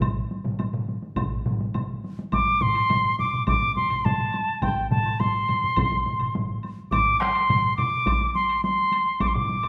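Powerful and driving, this short cut from a longer Japanese traditional taiko drum ensemble piece moves at 104 BPM in a straight 4/4. A solo taiko struck with hard sticks sounds alongside three taiko ensemble parts played with heavy sticks, one of them set in the background, while a woody woodblock sits quietly behind them. The drums run through the whole span, with one ensemble part stopping at 9.3 seconds. At 2.3 seconds a wooden piccolo enters up front, its pure tone carrying vibrato and a crisp attack as it sings between G5 and D6, the loudest voice in the mix. A wet recital hall reverb gives the performance a resonant, spacious setting.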